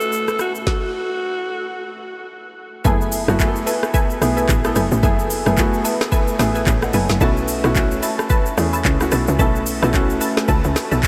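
This soulful, deep amapiano excerpt opens with a raspy, gritty alto saxophone solo floating in diffuse delay over a present baby grand piano, a fleeting detuned analog pad with chorus and sidechain pumping, and an overdriven, up-front electronic drum kit of deep kick, woody snare, metallic hats, handclaps, rim click and shaker. After a stop, punchy, full-bodied sawtooth chord stabs washed in chorus, phaser and delay slip in at 2.8 seconds, just before the drop lands at 2.9 seconds with a tight, percussive FM log drum bass, all in a mix soaked in huge, dreamy reverb.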